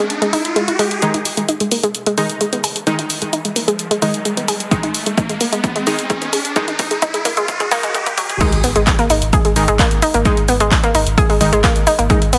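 A heavily compressed, radio-like mix in a lush hall carries this 130 BPM driving peak-time techno excerpt in G# minor, where a round, nasal analog pluck riff with tape echo and sidechain pumping runs from the start over punchy analog drum-machine hats, claps, shaker and crash, airy detuned supersaw stabs enter at 1.0 seconds for a riser-led build-up and drum fill, a layered electronic kick arrives at 4.7 seconds, and the drop at 8.4 seconds brings an impact, a deep saturated sine sub bass on G#1 and a very quiet acoustic big-band hi-hat and snare, all relentless and industrial in mood.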